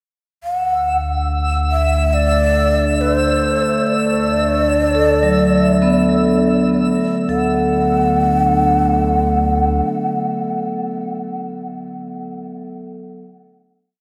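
Bathed in a huge, wet ambient reverb with a tail of 7.8 seconds, this short, peaceful ambient piece drifts at 70 BPM in D major, moving from a D7 chord to a D69 that settles into a long final chord. A breathy, hollow shakuhachi carries the melody up front, shaping arch-like motifs with vibrato, tongued chiff and lifted highs, its notes trailed by tape echo. Beneath it, a round, deep analog bass holds a dark, sustained root with tube saturation and fades out across the opening section, while an evolving, warbling vintage drone with chorus and pulse-width modulation lingers until about 10.8 seconds. A twinkling granular texture adds a bright, sparkling held high note with an octave-up shimmer and its own reverb. From 4.9 seconds a metallic, ringing vibraphone played with medium hard mallets and the motor off steps up front, its four slow arpeggio loops of unequal length drifting against one another through the tape echo until the close at 13.2 seconds.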